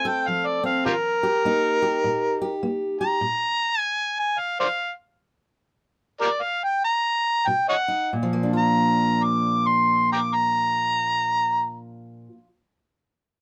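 A close, detailed recording with light reverb catches a rollicking, gritty acoustic country blues excerpt in Bb major, swinging in 4/4 at around 91-102 BPM. An amplified, overdriven harmonica carries the melody up front with light vibrato, scooped notes, tongue slaps and a jazz-flavoured edge, while a bright fingerpicked steel-string acoustic guitar accompanies it. The guitar drops out at 3.7 seconds as the tempo slows, leaving the harmonica alone until the guitar returns at 7.5 seconds, and the harmonica stops at 11.8 seconds.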